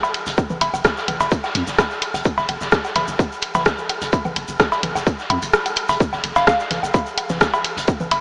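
Clinical and hypnotic, this short minimal techno excerpt at 128 BPM in straight 4/4 sets a tight, up-front electronic kick and a garage kit with bright hats and rim click over a deep sine sub bass ranging between F1 and F2 and pumping under sidechain, with tape-toned cowbell, woodblock and congas in analog delay, a grainy tube shaker and a gritty, saturated raw kit of hats, shaker and filtered snare in the background, all bathed in a huge ambient reverb with a small-speaker character, while the kick drops out from 5.5 to 6.0 seconds and a pure, mellow FM bell touches F5 with chorus and delay at 6.4 seconds.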